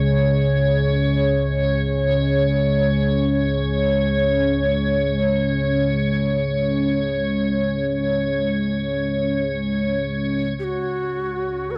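Unfolding in free time, this ominous, unsettling stretch of dark ambient drone is cut from a longer piece and hangs in a vast, wet reverb with a long decay. A deep, rumbling drone anchors the low end from the first moment, its detuned, vintage tone carrying its own built-in reverb. Above it, a moody, full-bodied analog pad sits up front with sustained chords thickened by chorus and a sub octave, while an icy, crystalline glass pad adds a bright, airy shimmer with a noise layer in a high register. The whole texture is coloured by worn, warbling old cassette tape, giving the pitch an uneasy drift. At 10.6 seconds a breathy, end-blown shakuhachi enters close-miked and up front, carrying a short melody with vibrato until the cut at 11.8 seconds.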